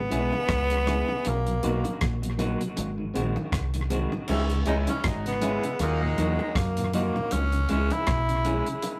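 A breathy, whispered tenor saxophone carries the melody up front in this laid-back, serious roots reggae excerpt, over a deep, round dub bass, a twangy, slightly broken-up electric guitar with spring reverb and tape echo, a mellow tonewheel organ with key click and a slow rotary speaker in the background, a damped 70s drum kit with a tight kick, rim clicks and tape echo, and low-tuned bongos, while a smooth horn section joins from 4.3 s to 6.5 s, all heard in a rough rehearsal-room recording with modest small-room reverb.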